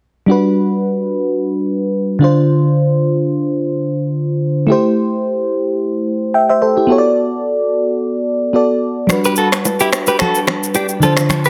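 A mellow, rounded FM electric piano with a soft chorus shimmer opens this joyful, romantic afrobeats excerpt at 109 BPM in G major, moving through Gmaj7, Dm7, Am7 and Bm7 chords alone until 9.1 seconds, when up-front electronic rim clicks, shaker and finger snaps arrive with bright, dry, hard-handed congas and bongos, and at 9.3 seconds a clean, picked, scooped electric guitar riff joins, recorded direct and washed in spring reverb and digital delay, all within a dense, heavily limited modern mix.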